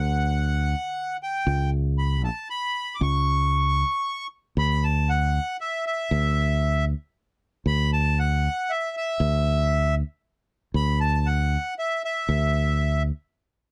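An accordion carries the melody over a fingered electric bass from the opening moment, its reedy, slowly beating tone sitting up front beside the round, punchy low end in this warm, hopeful indie folk excerpt at 116 BPM in 3/4. The harmony moves from D to a rootless Aadd9/C# before the chords fall away at 4.6 seconds into a new section of this building arrangement. The dry, close sound recalls a 1970s studio, with the bass and accordion playing until about 13 seconds.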